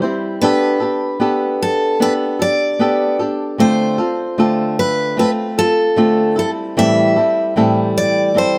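A dark, fingerpicked flamenco guitar opens this easy-going, carefree pop excerpt at 76 BPM with audible finger squeak, joined at 0.4 seconds by a full-bodied picked steel-string dreadnought carrying the melody, both up front in light reverb as the harmony moves from Gadd9/B to Dm7 and Am7.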